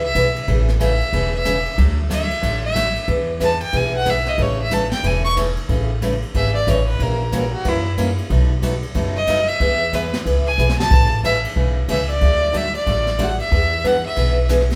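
Western swing country at 184 BPM with a swung feel in A major, this down-home, playful excerpt puts a clear, focused fiddle up front, bowed with light vibrato, taking the melody as a solo across two passes through the same phrase. A bright picked steel-string acoustic guitar fills the accompaniment, a woody, thumpy pizzicato upright bass sits prominently underneath, and a brushed jazz kit with dark cymbals, a high-tuned snare and boomy kick adds a short fill at 10.6 seconds. The band sounds live in one large studio room with moderate reverb, moving through chords such as Amaj7, D, E7 and a turn through F#7/A# and B7.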